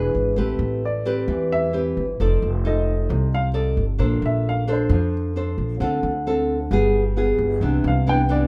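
A straight 4/4 bossa nova pulse at 132 BPM sets the pace for this wistful, melancholic fragment in A minor, cut from a longer piece. A fingerpicked nylon-string guitar sits up front with a classical touch, carrying the accompaniment from the start through 8.5 seconds. An upright bass on gut strings plays pizzicato, its woody, thumpy tone also placed up front. A dark baby grand piano takes the solo melody in a mellow, intimate voice with short sustain and audible action noise, dropping out at 5.1 seconds and returning at 7.9. The harmony moves through Am9, F13, Bbmaj9, Dm7 and G7b9 before settling on Cmaj9, all wrapped in a light reverb.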